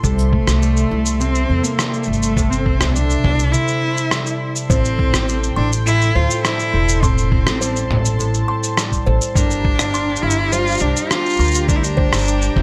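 This hopeful folktronica excerpt opens with an expressive, close bowed cello melody, rich with vibrato, portamento and delay, over a smooth chorused sawtooth pad, ringing fingerpicked concert harp arpeggios, a woody pizzicato upright bass with tube saturation, a muffled, thumpy electronic kick and a pitched-down lo-fi sampler kit of rim click, shaker and toms, and after a brief break from 3.5 to 4.7 seconds a delicate, tinkling music box with delay joins softly in the background, all within a light reverb.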